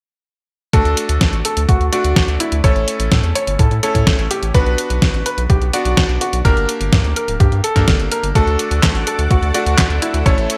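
Italo disco with a sunny, danceable mood, this short cut from a longer piece moves in a straight 4/4 metre from 0.7 seconds. A concert grand piano carries the melody with a present, polished tone and short sustain, touched by digital delay, while a bright electric grand piano adds cutting, clangy stabs. Underneath, a round analog bass sits deep and dark with tube saturation, and a thumpy electronic kick drum sits loudest in the mix. A clean 12-bit drum machine, up front, supplies handclaps, hi-hat and a fat snare bathed in gated reverb. The chords move from D through A and Bm to a darker Gm before returning to D at 8.4 seconds, where a lush vintage string machine enters in the background with phaser and ensemble chorus, all wrapped in light reverb and bright 1980s-style digital production.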